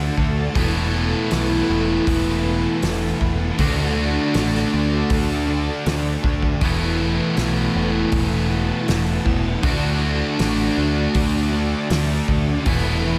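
A bright, double-tracked overdriven electric guitar rings through this wistful, dreamy shoegaze and dream pop passage, its picked riff sounding over a slow, straight 4/4 pulse. Beside it sit two more riffing guitars: a slightly broken-up, compressed guitar through a small old amp, trailed by reverse reverb, and a dark, thick fuzz guitar thickened with analog chorus, both tucked into the background. A growling, overdriven picked bass, the loudest part, anchors the low end with a direct-and-amped edge. The loose indie drum kit comes in at 0.2 s with a punchy kick, a fat snare and hi-hat in a pumping studio room, and stops at 12.8 s. Shimmering, full-bodied string-machine violins hold soft-attack sawtooth chords far in the back, spread by ensemble chorus. The harmony rocks between D and Esus4 throughout this short section cut from a longer piece, all set in a small room ambience.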